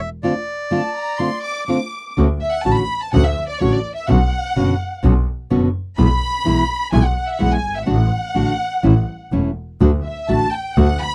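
A lush, expressive bowed violin section with vibrato takes the solo from 2.2 seconds in this tense, melancholic tango fragment at 126 BPM in D major with a rubato feel, after a reedy, up-front bandoneon opens the melody for its first moments, a warm, full-bodied fingerpicked nylon-string guitar supplies the accompaniment throughout, and a biting, intense bowed double bass joins at 2.2 seconds, all captured in a dry, close 1970s-style studio sound.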